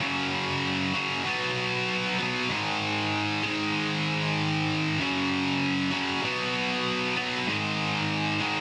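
Cathartic and angsty, this short rock fragment at 96 BPM in G# minor features a bright, double-tracked, high-gain distorted electric guitar playing solo and up front, moving through F#5, B5 and G#5 power chords and returning to F#5 at 5.0 seconds, with light reverb and a dense, heavily limited modern master.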